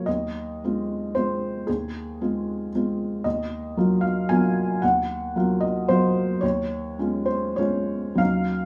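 In a loose, rubato three-beat sway, this melancholic, wistful neoclassical minimalist fragment, cut from a longer piece, features a solo felt-muted upright piano, soft, mellow and intimate, sitting up front and ranging from deep bass to a high treble as its chords drift from Fm7/Eb through Ebmadd9 to Db/Eb over an Eb bass across 8.7 seconds, all caught live with light reverb and the gentle ambience of a small room.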